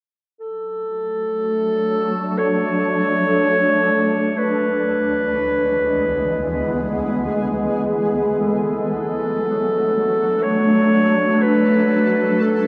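Unfolding in free time, this short ambient fragment in D lydian drifts along with a luminous, peaceful mood. A mellow clarinet opens at 0.4 seconds, playing a solo melody in a classical style that stays within a narrow range around A4 to C#5, its tone distant and roomy beneath a diffuse ambient delay. At 1.2 seconds a shimmering pad arrives with a slow attack and long release, sustaining chords that span from low D2 up to A4. The pad's ethereal, granular texture carries an octave-up sparkle, with chorus and its own reverb adding to the glow. The harmony rests on D, moves to E over a held D at 4.4 seconds, then settles back on D. Both parts sit up front within a vast, echoing cathedral-like space whose long reverb tail bathes the whole passage, which is cut from a longer piece.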